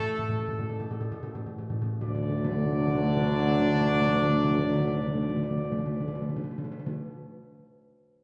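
A solemn, majestic classical fanfare in three opens with a timpani fill struck with hard mallets on calf heads, sounding articulate, close and up front, while the dark, distant trumpet section carries the melody over a warm French horn section holding soft-attacked chords with light vibrato and a smooth top. Through these first two seconds the music slows before any chord is sounded. At 2.0 seconds it settles onto a D chord as a tight, vintage-toned trombone section enters with sustained chords in the background, and a mellow tuba takes up the bass line up front with its own light vibrato. The brass sit in a reverberant concert hall that lends the trumpets a roomy, ceremonial breadth. The timpani carry on until 6.9 seconds, closing this brief passage cut from a longer piece.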